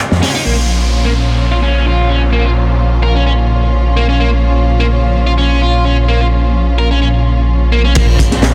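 A rich, bowed string section opens this swaggering, funky breakbeat cut at 128 BPM in Bb minor, holding smooth sustained chords with light vibrato and a sidechain pump. A thick, menacing detuned saw bass sits up front, while an overdriven, picked electric guitar riff carries vintage 12-bit sampler grit, a low-pass filter and delay, and a faint electronic downlifter passes beneath from 0.5 to 4.2 seconds. The crunchy, saturated breakbeat kit, with its high-tuned snare and dark cymbals, hits briefly at the start and returns at 8.0 seconds alongside punchy analog drum-machine handclaps and hi-hat, all under light reverb in a dense, heavily limited master.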